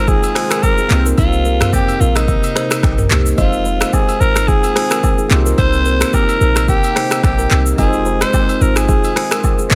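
A raspy alto saxophone with delay carries the scooped, present lead from the opening moment, over a bell-like tine electric piano through phaser, a moody detuned pad with chorus and reverb sitting in the background, and a boomy, clean 808-style bass. This mellow, hypnotic afrobeats groove moves at 109 BPM in F minor with a light swing, drifting between Fm7 and Cm7. A woody, ringing kalimba riff and an up-front overdriven electronic drum kit, with its deep kick, metallic hats, snaps, claps, rim clicks, shaker and toms, join at 0.1 seconds, followed by agogo bells and woodblock in the background at 0.2 seconds, all in a section cut from a longer piece.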